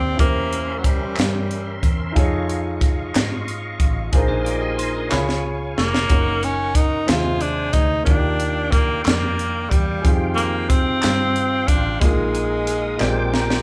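Hopeful and soulful, this slow gospel cut at 61 BPM in 6/8 sets a bright, vibrato-laden alto saxophone with scooped notes up front, playing a brief phrase at the start and returning at 5.8 seconds, over a concert grand piano with deep bass and long sustain, a reedy tonewheel organ holding chords through a slow rotary speaker with key click, and a foam-muted fingered electric bass. A crisp fusion drum kit with a high-tuned snare and punchy kick drives the groove, joined at 1.2 seconds by very quiet, dry group handclaps, while a clean, compressed electric guitar adds a short second line at 4.3 seconds. The band plays together in a large studio room, moving through rich extended chords from C7b9/E to a closing Bb13, where drum and piano fills round off the passage.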